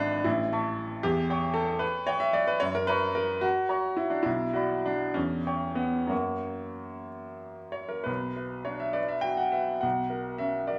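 A bright, up-front baby grand rings in a moderate large-studio reverb touched with small-room ambience, a close yet spacious sound for this brief passage cut from a longer romantic character piece. The solo piano plays across the full 10.8 seconds, spanning deep bass to upper treble in a stormy, brooding B minor, with a rubato 6/8 feel that drifts between 58 and 77 BPM in dotted quarters as diminished and F# harmonies circle back to the tonic. Near 8.1 seconds a new section opens on B minor and moves to an F#7 chord over a B bass.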